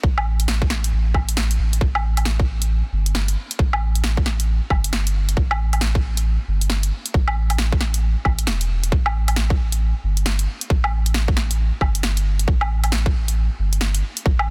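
Ghostly and rainy, this future garage fragment at 135 BPM in 4/4 swings its 16ths at 62%, pairing a tight, up-front electronic kick with a layered garage kit of cracking snare, warm hats and woodblock that enters at 0.2 seconds, over a deep, round sine sub bass between E1 and A1 that pumps with sidechain compression, in a dry, dense and heavily limited modern mix.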